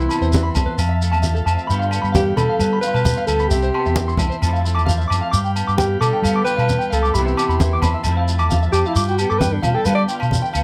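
Highlife guitar band in a sunny, danceable groove, with a breathy, subtone alto saxophone soloing up front with plate reverb over a round, dark fingered bass, slightly broken-up electric guitar arpeggios with slapback echo, a clean hollow-body guitar with ensemble chorus, a reedy vintage combo organ holding background chords with spring reverb, and shekere, agogo bells and low-tuned congas, all in a small room, cut from a longer piece.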